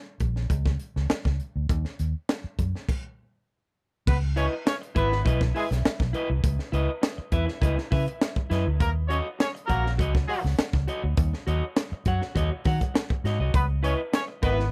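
This cool, hypnotic funk groove moves at 101 BPM in a straight 4/4, with a dark, round, foam-muted fingered bass and a gritty, punchy fusion kit with bright cymbals and a high-tuned snare driving from 0.2 seconds, pausing together for a stop at 2.9 seconds. At 4.1 seconds a clear vintage horn section enters up front with light vibrato and octave doubling as the harmony shifts between C#m9 and D#m7 in C# dorian. A twangy, slightly broken-up picked electric guitar with spring reverb joins at 4.4 seconds in this dry, close-sounding excerpt from a longer piece.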